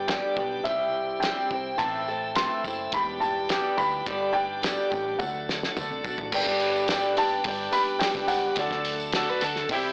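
A soft, muted upright piano carries the melody with a slapback echo over a boxy, up-front picked acoustic guitar with a swing feel and audible finger squeak, a piping tonewheel organ turning slowly through a rotary speaker in the background, and a round, punchy hollow-body bass, opening this nostalgic, hopeful folk and heartland rock excerpt at 106 BPM in G major. A cloth-damped, thuddy drum kit with a fat snare and dark cymbals sits up front, a jingly tambourine joins very quietly at 1.8 s, and a drum fill leads to a worn, slightly detuned second upright piano with audible action noise at 6.3 s. A woody mandolin with double strings appears at 9.2 s, all heard through a blown-out, overdriven, AM-radio-like sound with light reverb.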